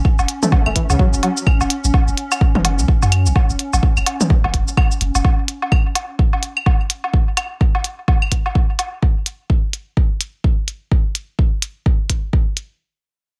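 Dry and close, this hypnotic, cool minimal techno excerpt runs at 127 BPM in 4/4 with a swung sixteenth feel, anchored by a deep, up-front electronic kick and clicky cabasa and hi-hat that play through to the end. A swarming, detuned drone with built-in reverb and a punchy sine sub bass with a pitch-drop attack both pump against the kick until about 5.3 seconds, while a brief twangy, warbling resonator pluck with chorus, phaser and delay sounds near the start. Layered, tape-tinged woodblock, toms and claves, set back in a larger room with delay, carry on until 8.9 seconds.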